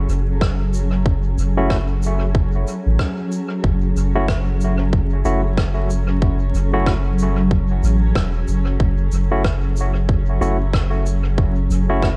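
A tight electronic kick with a large-room sheen enters up front at 0.4 seconds, over a distant, roomy shaker and rim click trailing dub echo, setting a 93 BPM 4/4 groove swung on the sixteenths in this hazy, spacious ambient dub piece in F# minor, cut from a longer track. A round, deep analog bass with a filter sweep sits up front beneath a blurred, evolving granular cloud pad that holds a sustained F# minor chord in its own reverb. From 1.6 seconds a bright, barky tine electric piano, lightly overdriven through a combo amp, adds stabs soaked in dub echo, and the whole mix sits in light reverb and small-room ambience with vinyl crackle.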